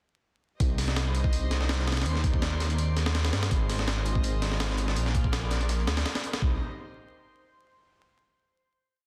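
Drum and bass with a jungle edge, nostalgic and dark, where a gritty, pitched-up, heavily chopped sampler breakbeat with a thumpy kick and high-tuned snare sits up front beside a deep, rumbling detuned saw bass of long gliding notes, while a sul tasto symphonic string section floats sustained chords in the background, a glassy chorused texture of drifting overtones enters at 1.2 seconds, a very quiet smooth soul kit loop joins at 3.5 seconds, and the dense, heavily limited mix carries vinyl crackle before resolving on a final chord at 6.4 seconds.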